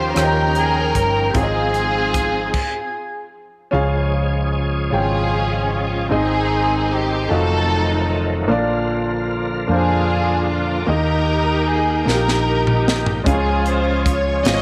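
A lush, up-front string section carries the melody from the opening moment, its smooth bowed vibrato touched by a slapback echo, while a baby grand piano with short sustain accompanies and a hollow-body electric bass holds a round, dark low end in this slow, hopeful gospel piece in 6/8 at 50 BPM. Behind them a bright tonewheel organ sustains shouting, lightly overdriven chords through a slow rotary speaker with chorus vibrato and audible key click. A breathy, distant alto saxophone adds a whispered, intimate jazz-style line from 0.2 to 3.3 seconds, as a crisp fusion drum kit with a high-tuned snare and tight kick plays briefly before a stop that holds until 3.7 seconds. The harmony moves from Eb9 and Ab6 into a longer passage through Db, Ab, F7b9, Bb and Eb, where the strings, piano, organ and bass carry on together. The drums return at 12.1 seconds with a fill, and a moderate echo chamber reverb gives the uplifting arrangement a sense of space.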